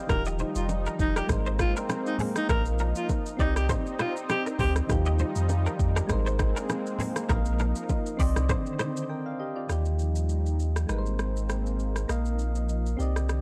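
This dry, gritty recording, with little reverb, is a sunny, romantic afrobeats groove at 100 BPM in Eb major, cut from a longer piece and carrying a gentle 16th-note swing. A breathy, intimate alto saxophone leads up front with scooped notes and light vibrato before dropping out at 4.7 seconds, while soft, round electric-piano-like synth keys with chorus, tremolo and a filter sweep cycle through Ebadd9, Abadd9, Bbsus4 and Cmadd9 over a lush, thick, warbling pad of detuned sawtooth voices. Up front, a punchy sub bass with a pitch-drop attack sits beneath an electronic afro-pop drum kit of deep kick, crisp hi-hats, rim click and shaker. A bright, twangy clean electric guitar, recorded direct and treated with ensemble chorus and analog delay, picks out a riff until 8.9 seconds, and ringing congas and bongos played with soft hands sit close in the background until 9.0 seconds. After a brief break, the keys, pad, bass and drums carry the chord cycle on into the closing section.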